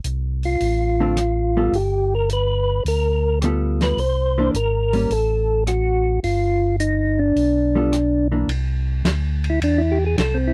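A swung 4/4 groove drives this bluesy, greasy soul jazz organ trio fragment, where a round, lightly overdriven tonewheel organ bass with chorus vibrato and slow rotary speaker sits up front over a tight, mid-forward acoustic drum kit of hi-hat, ride, rim click and snare with dark, rolled-off cymbals; a clean, percussive organ carries the melody from 0.5 seconds before taking a solo at 8.5 seconds, while a compressed, fingered hollow-body electric guitar comps from 1.0 seconds, all in a dry, close 1970s-style studio sound with little reverb.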